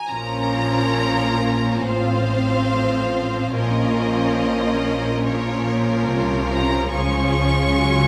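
Melancholic and elegiac, this brief excerpt from a slow romantic orchestral movement unfolds at 71 BPM in 4/4 with a rubato feel, set in Bb minor. A violin section carries the melody in a high register, its bowed tone focused and lush with vibrato, while a second violin section supplies a smooth, close second line beneath it. Violas fill in the accompaniment with an even, rich texture, and cellos and double basses share the bass, the cellos sounding focused with a smooth top and the basses smooth and even. All five string sections play together from the opening moments to 8.1 seconds, moving through Bb minor, F over A, back to Bb minor, and arriving on Db. The ensemble sits in a reverberant church or concert hall, whose recital-hall ambience lends the strings a spacious, mournful glow.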